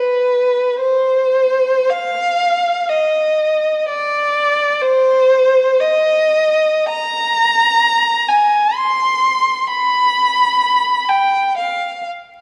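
This classical excerpt is a free, expressive piece for a single unaccompanied violin, mournful and yearning in mood. The violin plays alone from 0.0 to 12.1 seconds, its bowed line moving between B4 and C6 with a rich tone, vibrato and portamento. It sits up front, though the reverb of a scoring stage lends it a distant quality. The production is dark and warm, and a layer of vinyl crackle gives the recording an aged character. The fragment is cut from a longer piece.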